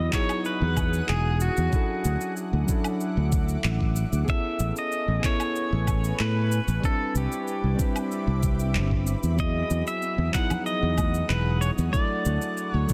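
A dense, heavily limited modern mix with light reverb and digital ambience frames this sunny sunset chillout excerpt in E major at 94 BPM, moving through lush major-ninth chords from Emaj9 to Dmaj9, Amaj9 and Cmaj9. A clean, compressed pedal steel guitar carries the melody with fingerpicks, slide and volume swells through tape echo. Beneath it, soft, round electric-piano-like synth keys with chorus and an ethereal, shimmering pad sitting in the background rest over a growly, up-front fingered electric bass, a knocking electronic kick, and electronic handclaps, shaker and woodblock, with hard-handed, dry congas appearing briefly at 10.5 seconds.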